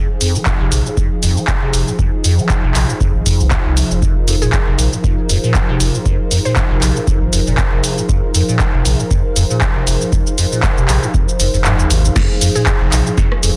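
Acid house in F minor at 118 BPM, this trippy, gritty cut from a longer piece rides a 16th-note swing over a single Fm7 chord. A squelchy, resonant square-wave acid bass carries the riff, its filter sweep, phaser, ensemble chorus and cassette-tape coloring giving it a liquid feel, while a deep, thick, saturated triangle sub bass sits beneath it. A deep, tape-warm electronic kick and a punchy analog drum machine, with snare, handclaps, hi-hat, rim click, cabasa and crash cymbal, drive the groove, both re-recorded in a large room. A mellow, detuned sawtooth pad holds sustained chords with chorus, and a cloudy, evolving granular pad fades in behind it with its own reverb, the pads and both basses pumping against the sidechain. A woody, round FM pluck with tape echo adds a brief melody in the background from 4.4 to 7.2 seconds and returns for a moment at 12.6 seconds. The kick drops out at 11.7 seconds, and a drop lands at 12.2 seconds in a dense, heavily limited modern master with light reverb.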